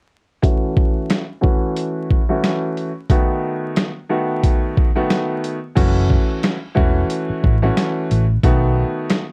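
The recording sounds worn and dry, like old cassette tape, with vinyl crackle and a warbly pitch drift. It is a gritty, moody boom-bap hip-hop groove at 90 BPM in 4/4, with a swung 16th-note feel in F# dorian, cut from a longer piece. A sampler-style drum kit sits up front, compressed and pitched down, with a thumpy kick, a medium-tuned snare, hi-hat and crash cymbal. A vintage concert grand piano, also up front, plays smooth accompaniment with deep bass and long sustain, moving from F#m7 to B7 under a filter sweep until 5.8 seconds. At that point a round, dark hollow-body electric bass enters with an amped tone as the chords return to F#m7 and then B7, and the groove runs to about 9.3 seconds.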